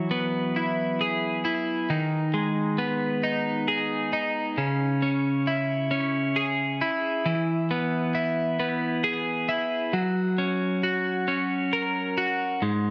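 A lightly reverberant digital ambience surrounds this short rock excerpt, taken from a longer piece, with a single twelve-string electric guitar sitting up front in the mix. The guitar plays alone throughout its 12.9 seconds, its picked, clean tone sounding bright and twangy, with a compressed edge and a halo of spring reverb and slapback echo. Set in E lydian in 6/8 at 45 BPM, counted in dotted quarters, the music moves with a straight, unhurried feel and carries a soaring, hopeful mood. The opening passage moves from Eadd9 to G#m/D#, and a second passage beginning at 4.6 seconds steps through C#m, E and F#. The guitar's range spans from G#2 to A#4.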